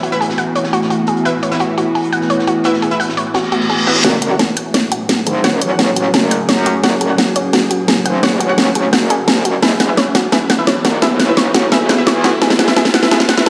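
Futuristic and mechanical, this dark technical drum and bass cut at 172 BPM in F# minor opens with an eerie, inharmonic metallic drone, a round, nasal analog pluck arpeggio with dub echo, a cloudy granular pad and bold orchestra-hit-like stabs in the background, all over an up-front electronic kit with a cracking snare, joined until 4.0 s by a gritty, saturated breakbeat kit; a very quiet reverse cymbal and riser arrives at 3.5 s, and from 4.0 s an aggressive, distorted FM wobble bass drives a build-up as filter sweeps move across the drone and pluck, with the mix set in a lush hall reverb and played through a big sound system in a stone room.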